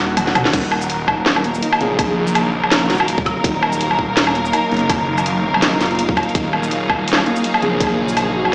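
A cracking snare and metallic hats from the up-front drum and bass kit drive this heavy, tense half-time drum and bass cut in Eb minor at 165 BPM, with a light swing on the 16ths. The kit arrives with a fill at 0.2 seconds, and a tight electronic kick joins at the drop at 0.5 seconds, both carrying a layered, produced character. Underneath, a thick, swirling detuned saw bass holds the low end with a saturated, phaser-coloured tone, while a rich, bowed string section sustains chords that pump against the beat. A soft, felt-muted upright piano plays mellow arpeggios through a digital delay, and a breathy, flute-like synth lead with chorus and vibrato surfaces briefly in two short phrases, the first at 1.8 seconds. A bright, grainy, flickering texture glimmers in the background during the opening break, and the whole mix sits in a stone-room echo that gives it a bare, small-speaker feel.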